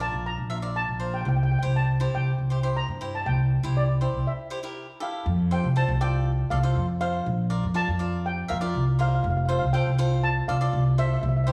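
A woody, thumpy upright bass sits up front in this bouncy, sunny calypso, its pizzicato gut strings giving the low end a dark weight. Above it, a steel pan carries the melody with a metallic shimmer, soft rubber sticks drawing a mellow, mid-forward tone from the lead pan. A bright, crisp cavaquinho supplies picked acoustic accompaniment, and all three parts play together through the whole clip in a straight 4/4 feel. The harmony moves from Bbadd9 to C in the opening passage, a break arrives at 4.3 seconds, and a new section begins at 5.3 seconds, cycling through F and Bbadd9. A moderate recital hall reverb blends with small room ambience, and the clip is cut from a longer piece.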